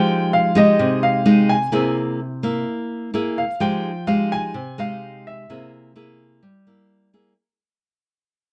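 A straight 4/4 bossa nova pulse at 128 BPM carries this melancholic, intimate excerpt in F minor, tuned to A4 = 438 Hz, as it moves between Fm9 and C7b13 and fades out from the start. A full-bodied, fingerpicked nylon-string guitar with audible finger squeak holds the accompaniment up front until 7.3 s. A smooth, vintage-toned concert grand with short sustain sings the high melody until 5.7 s, all in a light reverb.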